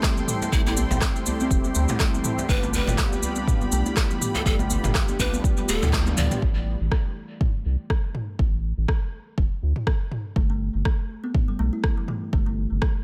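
An earthy afro house groove at 122 BPM opens with a deep, up-front electronic kick, a layered deep house kit of handclaps, rim clicks and toms, a grainy cabasa, a detuned sawtooth pad and chorused synth brass stabs over Am7 and G7, joined by a soft-handed djembe in the background, a woody, ringing kalimba, a breathy bamboo pan flute melody with chiff and vibrato, and a round, nasal analog bass. After a drum fill and band accent at 5.9 seconds, the second half strips down to kick, kit and bass, with the kalimba returning at 10.4 seconds.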